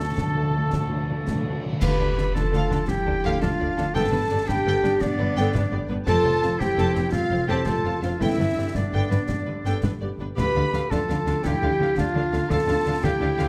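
Adventurous and swashbuckling, this heroic film-score fragment, cut from a longer piece, rolls along in a straight 12/8. It opens with a timpani fill under clear trumpet stabs, and at 1.8 s a bright crash of clash cymbals and bass drum marks a band accent as the harmony settles into a minor mode, moving through Gadd9 and F chords. A dark, lush violin section carries the melody with vibrato and portamento, while flute, oboe, bright clarinet and a distant studio violin section weave second lines around it. Beneath them, dark, tight French horns hold sustained chords, a very quiet viola section and a ringing fingerpicked harp fill in accompaniment and arpeggios, and cellos with an intense double bass section anchor the low end. Snare, bass drum and bright cymbals drive the rhythm close and dry, the timpani returns briefly at 10.4 s, and the whole is heard through detailed microphones in a moderate recital hall.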